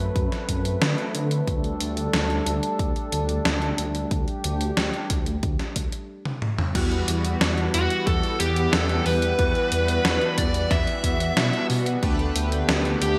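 Moody, cinematic synthwave cut from a longer piece, opening on a warbling, vintage analog pad with chorus and sidechain pumping over a deep, rumbling detuned saw bass with tube saturation, while a punchy electronic kick joins an up-front 80s digital drum machine of crash, hi-hat, snare and toms carrying gated reverb. After a drum fill at 6.3 seconds, a glossy chorused polysynth adds background stabs with digital delay from 6.7 seconds. At 7.7 seconds an overdriven, dark lead guitar takes the melody up front, shadowed by a shimmering, full-bodied string machine of violins in the background, both with digital delay, all within a bright 1980s-style digital production and moderate plate reverb.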